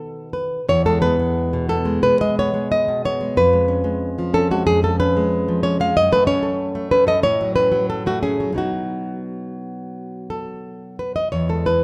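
A moderate recital hall reverb, with a decay of 1.6 seconds, surrounds this short passage cut from a longer romantic piece for solo classical guitar. The nylon-string guitar sits up front, its fingerpicked tone dark and deeply classical, ranging from E2 up to E#5. The mood is nostalgic yet sunny, moving in 4/4 with a rubato feel at roughly 81 to 95 BPM, in E major and tuned to A4 = 445 Hz. The harmony opens on B before settling on E at 0.7 seconds, then passes through C#7/E#, F#m and F#m/A before returning to B and resolving home to E at 11.3 seconds. The guitar plays alone throughout the full 11.8 seconds.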